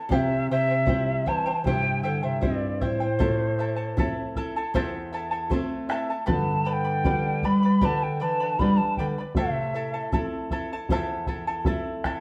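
Heard through a wet studio reverb, with the ensemble playing live in one room, this brief cut from a longer Andean folk piece in A minor moves at an unhurried 78 BPM in straight 4/4, carrying a mood that is both melancholic and festive over a C, Am, G, Am progression. An airy, hollow cane quena sits up front with vibrato and tongued notes, paired with a close-miked, classical-style bass clarinet line that also stands forward; both enter at 0.1 seconds and stop at 10.1 seconds. Beneath them, a shimmering, double-strung charango and a bright fingerpicked flamenco guitar with audible finger squeak keep the accompaniment going alongside a deep, dark, vintage-sounding bombo, while the guitar adds a nylon-string fill at 5.1 seconds.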